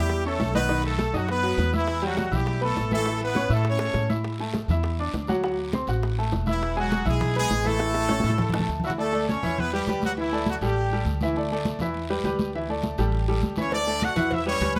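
Joyful and festive, this salsa cut from a longer piece races along at 203 BPM in D major, with a brilliant, close-miked horn section up front carrying the melody in octave doubling with light vibrato, a bright, worn grand piano with short sustain alongside it, and a woody, thumpy pizzicato upright bass underneath, while high-tuned congas with thick, damped skins and tight dry bongos and cowbell keep the groove in the background, joined by a raspy guiro, all under light reverb, the horns dropping out at 11.0 seconds and the bongos and cowbell pausing at 8.9 seconds before both return near 13.6 seconds.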